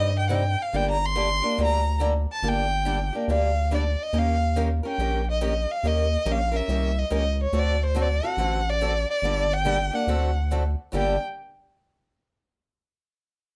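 Bittersweet yet fiery, this short fragment of acoustic string swing in G minor moves at 141 BPM with a lilting swung feel, its harmony passing from Cm and Gm through Eb7 and D7 before settling back on Gm at 10.9 seconds. A single close, bowed violin carries the melody up front with expressive vibrato, soft attacks and gliding portamento, while a bright, boxy parlour steel-string guitar picks the accompaniment beneath it. A deep, dark analog bass with a round, sustained tone anchors the low end, and the whole group sits in a moderate club reverb.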